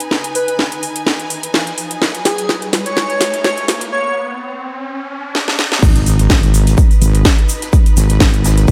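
Light, small-room reverb and a high-pass filter give the mix a tight, close sound, with the kick, house drums and bass pushed up front. This aggressive, swaggering bass house clip is cut from a longer piece and rides a gently swung groove. It opens with a build in which a tape-warm house drum kit with cracking snare, metallic hats and crash cymbal plays fills, while a clear, lush studio string section pumps against the sidechain. An airy, dreamy lead with chorus, vibrato and tape echo floats a short melody until 4.1 seconds, and an electronic riser carries the tension through a brief break. At 5.8 seconds the drop lands with an impact, a layered electronic kick with a punchy attack, and a heavy, wobbling sawtooth bass that is saturated and compressed. Underneath sit a very quiet, gritty vintage drum kit with hi-hat, shaker and snare, and a grainy tube shaker.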